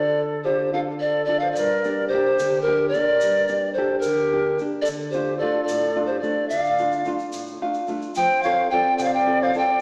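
Festive and earthy, this Andean folk ensemble piece moves at 73 BPM in a straight 6/8, cut from a longer performance. A polished pan flute carries the melody up front, airy and close with a soft attack and gentle vibrato, while a large quena sits lower in the mix on a second line, breathy and expressive with a crisp, chiffy attack. A dark, fingerpicked nylon-string guitar supplies classical-style accompaniment, its finger squeaks audible, and it adds a brief fill between 7.3 and 8.2 seconds. A grainy, bright egg shaker enters faintly at 1.6 seconds, sounding compressed and saturated. The harmony moves from D minor through G minor and back to D minor before landing on F, all set in a wet recital-hall reverb that suggests a church or concert hall, though heard through a small-speaker sound.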